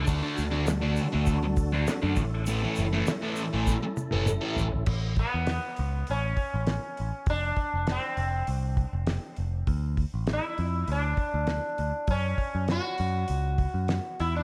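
A hazy, hypnotic psychedelic rock excerpt at 100 BPM in A major opens with a mellow tonewheel organ through a slow rotary speaker, a thick double-tracked fuzz guitar riff with phaser, up-front picked electric bass, a cloth-damped thuddy drum kit with a fat snare and a grainy egg shaker in the background, then after a drum fill from 3.7 seconds the organ, guitar and shaker drop out and a buzzing, shimmering sitar carries the melody from 5.2 seconds in diffuse ambient delay over bass and drums, all within a dreamy, reverb-soaked mix.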